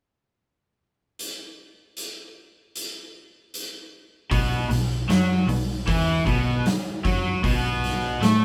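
A live-in-one-room sound with a moderate small-room reverb opens this short cut from a longer blues rock and southern rock track, moving at a driving, raunchy 77 BPM in a straight 4/4 and tuned slightly below standard pitch. An oversized, low-tuned acoustic drum kit starts alone at 1.2 seconds, gritty and saturated, its punchy kick, medium-tuned snare and hi-hat sitting up front inside a big, pumping room sound. At 4.3 seconds the crunchy overdriven guitar and the bass come in together on a B5 power chord as the section changes. The picked, double-tracked guitar riff runs from B2 to A3 with a warm, overdriven bite and sits up front. Beneath it, a vintage foam-muted fingered electric bass adds a dark, round, amped low end between B1 and A2, carrying the power-trio groove to the close at 8.4 seconds.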